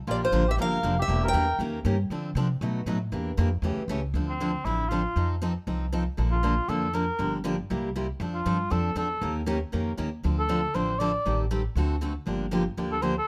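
A light reverb surrounds this short, bittersweet excerpt of acoustic string swing in the jazz manouche style, with a faint mains hum audible beneath the instruments. At 236 BPM in D minor, with a swung 4/4 feel, it moves briskly through changes such as Em7b5, Dm7 and A7 before turning toward Bbmaj7 and F6 in its second half. A pizzicato upright bass with a woody tone anchors the low end throughout, while a picked steel-string dreadnought guitar, full-bodied and bright with fresh strings, supplies the accompaniment. At the opening, a boxy picked archtop guitar states a brief melody alongside a mellow cor anglais, and the archtop drops away by 1.6 seconds. From 4.1 seconds the cor anglais takes a solo in a classical style with light vibrato, carrying the line until the excerpt breaks off at 13.3 seconds.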